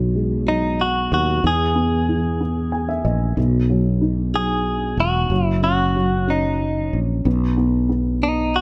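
A tender, swaying six-eight pop ballad excerpt in which a dark, woody upright piano with audible action noise and a slightly detuned, vintage character carries the accompaniment and adds a brief fill at 2.4 seconds, while a growly, up-front fretless electric bass sustains underneath and a clean, picked, compressed electric guitar, recorded direct, enters at 0.5 seconds with the melody, all set in light reverb and small room ambience.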